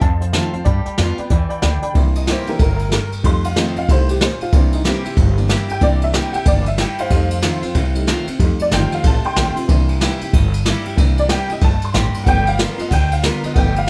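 Rowdy and retro, this swinging rockabilly excerpt in C mixolydian moves at 186 BPM over a brushed jazz kit with a boomy kick, up front in a small room, and a woody, thumpy pizzicato upright bass on gut strings. A bright, full-bodied picked steel-string acoustic guitar and a jangly, detuned honky-tonk upright piano carry the accompaniment, while a dark, mellow upright piano touches a brief melody on A5 with plate reverb in the background before dropping out at 0.9 s. The honky-tonk piano plays a short fill from 1.3 s and then takes a solo from 2.0 s through the rest of the clip, riding changes between C7, F7 and G7.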